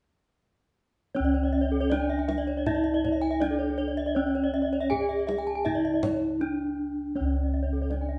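Shimmering and brilliant, this brief fragment of Balinese gamelan moves at 80 BPM in a straight 4/4 in C# pelog, with a bronze metallophone carrying the melody while two more trace ringing arpeggios, their paired tuning producing shimmering beats and a horn-mallet brightness, the one spanning C#5 to G#5 sitting up front. Bossed gongs struck with padded beaters anchor the bass with a round, mellow tone from 1.1 seconds, and a deep, dry kendang joins at 1.9 seconds. The ensemble plays live in one room, close-miked yet bathed in a large studio reverb, and pauses for a break at 6.0 seconds before the fragment ends.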